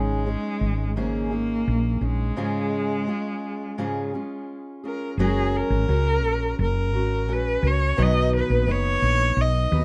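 A bowed cello with vibrato sings a focused melody over fingerpicked, full-bodied steel-string acoustic guitar and a round, punchy fretless electric bass, opening this carefree, heartfelt acoustic pop excerpt in F# major at 86 BPM, with a break from 2.4 to 5.2 seconds before a new section begins, all in a rough home demo mix with light reverb.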